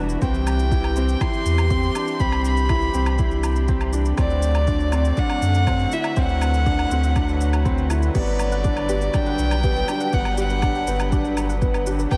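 Tender and hopeful, this piano and strings electronica moves at 121 BPM in 4/4 with a straight feel in G major, cut from a longer piece. A clear, intimate concert grand piano with audible action noise plays a riff from the start, dressed in analog chorus and delay, while a distant chamber string section holds soft-attack bowed chords around it. A rich solo violin carries the melody from 0.2 seconds, its light vibrato and biting intensity capped by a smooth top and trailed by delay. Underneath, a round sine sub bass sits up front with sidechain pumping, joined by an overdriven electronic kick and a layered kit of electronic shaker, woodblock and crash cymbal, both re-recorded in a small room. At 8.1 seconds a very quiet, warbling lo-fi pluck adds detuned vintage arpeggios. The chords move from Cmaj7 to D7 to Gmaj7, and the whole mix is dreamy and soaked in a huge ambient reverb.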